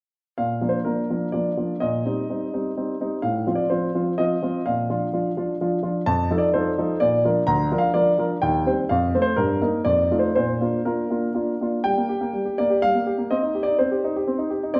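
A classical-period piano sonatina in B-flat major, this graceful, cheerful excerpt moves in 3/4 at 126 BPM with a rubato feel that lets the phrasing breathe. A single grand piano carries everything as a solo from 0.4 to 14.8 seconds, its tone smooth and vintage and placed up front, ranging from low D2 to B-flat5. The harmony circles the home key through C minor seventh, F over A and F7 before settling back on B-flat, then passes through a quicker run of inversions leading to a cadence at 10.4 seconds. At 11.8 seconds a new section turns toward G minor and then C minor, cut short since the passage is taken from a longer piece. A generous recital-hall reverb with a 1.5-second tail surrounds the instrument, giving it the airy bloom of a church or concert hall.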